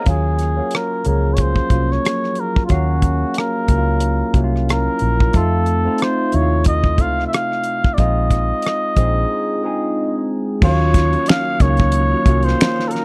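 R&B and neo-soul with a sultry, late-night mood, this short excerpt from a longer piece sets a breathy, cup-muted trumpet melody over a barky, lightly overdriven tine electric piano with phaser, a dark, round fingered electric bass and a damped 70s drum kit with fat snare, tight kick and finger snaps, while a smooth tonewheel organ with fast rotary speaker sits in the background and returns at 10.6 seconds, just after a break, captured in a close, dry 1970s-style studio sound.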